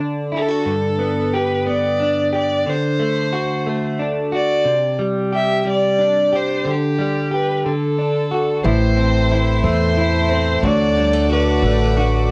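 A six-eight pop ballad in 6/8, moving at 60 BPM counted in dotted quarters, with a romantic, tender mood in this short excerpt cut from a longer piece. A clean, direct-recorded electric guitar, double-tracked and compressed, opens the accompaniment at 0.0 seconds with a picked part up front, and a smooth, bowed solo violin enters at 0.4 seconds with the melody, its even vibrato set in plate reverb so it sounds distant despite sitting forward. The harmony drifts through D, G, Csus2 and G5/D before turning to A minor at 8.6 seconds, where the arrangement fills out. There a pizzicato upright bass arrives woody and thumpy up front, a full-bodied, picked jumbo acoustic guitar plays arpeggios in the background, and a close, earthy studio string section holds bowed chords with light vibrato. The whole home recording on cassette carries a light reverb, with tape coloring every part except the bass.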